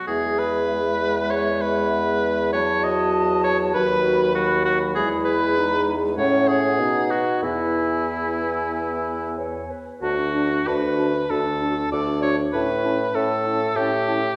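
Heard through a wet recital-hall reverb, this excerpt from a cheerful, graceful classical-period movement for wind quintet moves at a quick 91-99 BPM in 4/4 with a rubato feel, starting in E major and shifting to D major at 10.0 seconds. A hollow, airy silver concert flute carries the melody with vibrato from the background, while a warm, smooth-topped oboe sits up front on the second line. A dark, distant clarinet and a mellow, soft-attacked French horn fill in the accompaniment, and a roomy bassoon with light vibrato anchors the bass near the front.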